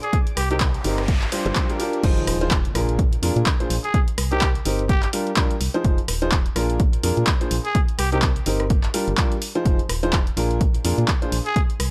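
A clear, woody upright piano riff sits up front in this bittersweet, energetic piano house excerpt, pumping alongside a hollow, dark, organ-like FM bass while a raspy, growling solo trumpet with delay and light vibrato carries the melody from 3.8 to 8.2 seconds. A silky, very quiet string pad opens the clip with sustained chords until the drop at 2.0 seconds, which a background noise sweep leads into and an impact marks. Underneath, a punchy, tape-warm kick and an analog drum machine with crash, handclaps, hi-hat and rim click drive a swung groove through seventh chords, all set in digital ambience.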